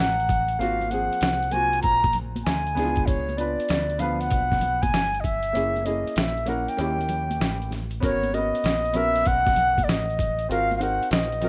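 A reedy, airy flute leads this cool, nocturnal jazz-hop cut with a straight tone, up front over smooth, vintage grand piano chords of short sustain, a dark, round picked electric bass and a gritty, compressed, pitched-down sampler-style drum kit with a thumpy kick and medium-tuned snare. Close, dry egg shaker and hard-handed congas join in the background at 0.2 s, and the kick drops out between 6.8 and 8.0 s as the swung groove moves through jazzy changes such as G#13, C#7b9 and G#m11. Studio reverb colours the rough home-demo mix.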